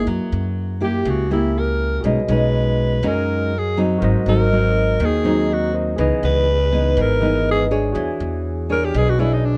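Smooth and wistful, this bossa nova in G# minor at 122 BPM features a raspy, growling alto saxophone soloing up front with light vibrato over a full-bodied, thumb-plucked nylon-string guitar and a woody, thumpy pizzicato upright bass, while a barky, lightly overdriven tine electric piano enters in the background at 2.0 s, all set in a dark production with light reverb.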